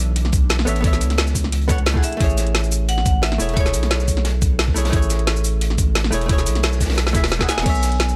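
Dreamy and melancholic, this short cut of liquid drum and bass moves in a straight 4/4 over chords shifting from Bm11 to Amaj7. A saturated sub bass sits deep and thick up front, with a compressed, thumpy electronic kick adding grit. A layered electronic kit with a woody snare, metallic hats, crash, ride and shaker drives the groove, while a crunchy acoustic breakbeat with a dark, rolled-off top sits in the background, and a drum fill arrives at 7.0 seconds. A clean, picked hollow-body jazz guitar plays dark, compressed accompaniment through delay for the whole span. A very quiet, breathy pad holds mellow chords at the opening and returns near the close. From 2.0 seconds a hard-mallet vibraphone with its motor off rings out a bright, metallic melody through tape echo, and the mix stays dry.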